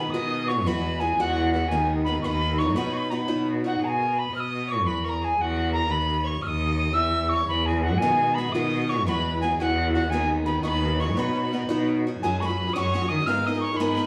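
Celtic folk jig in 6/8 with a rollicking, bright mood, cut from a longer piece and played by a small band together in one room with a wet studio reverb. A wooden whistle carries the melody up front, its pure, woody tone marked by chiff, a crisp attack and vibrato, though it sounds somewhat distant and unsteady. Behind it, a bowed fiddle plays a second line low in the mix, biting and nasal with an earthy edge and light vibrato. A picked steel-string parlour guitar sits up front with a boxy, acoustic character, dropping out between 3.8 and 8.0 seconds before returning. A rich, expressive cello holds down the bass with a soft attack, vibrato and portamento. The harmony moves through colourful added-note chords such as Eadd9, G#m/D# and Badd9, closing on F#sus2 and G#madd9.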